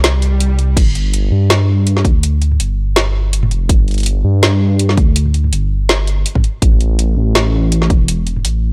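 Half-time drum and bass at 164 BPM in 4/4, this short cut from a longer piece carries a spacious, dark mood, with a slight swing on the sixteenths and tuning set to A4 = 442 Hz. A deep, rumbling detuned sawtooth bass sits up front from the first moment, its beating unison voices blended with a sine layer, with a fast attack and long sustain, spanning E1 to G2. The layered electronic drum kit plays alongside it, pairing a woody snare and metallic hats with crash cymbal and toms, re-recorded in a small room and placed close to the listener. A brief electronic swell appears at 0.2 seconds, and a hard-clipped electronic kick drum arrives at 0.8 seconds, standing as the most forceful element in the mix. The overall sound is dry and gritty, with little reverb and a loud, hardware-driven edge.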